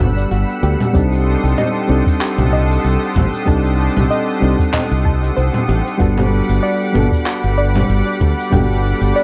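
A dark, lightly reverberant production carries this smooth, relaxed sunset chillout excerpt at 95 BPM with a gentle 16th-note swing, as soft, warbling electric-piano-like synth keys with chorus and digital delay move between Gmaj7 and Cm6 over a lush, detuned unison pad, alongside a round, nasal pluck playing arpeggios in the background, a bright fingered electric bass up front, a deep, dry electronic kick, tape-warm layered electronic congas, cabasa and handclaps, and a faint, breathy wind-like noise texture held on F#5.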